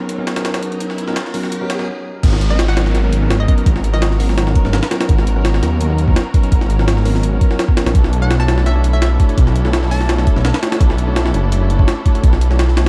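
A straight 4/4 jungle groove at 168 BPM drives this frenetic, raw drum and bass excerpt in G# minor. The gritty, overdriven sampler-style kit, with its thumpy kick and high-tuned snare, sits up front alongside a thick, menacing detuned saw bass that drops in at 2.2 s after a brief build-up and stop. Around them, lush bowed strings with vintage sampler grit hold sustained chords, a bell-like tine electric piano fires echoing, filtered stabs, a hollow, bouncy square pluck adds short chorused melodic phrases in the background from 2.5 s, and an electronic riser and downlifter open the section before the harmony shifts from G#m11 to Bm11 at 7.9 s, all in a dark, digital ambience.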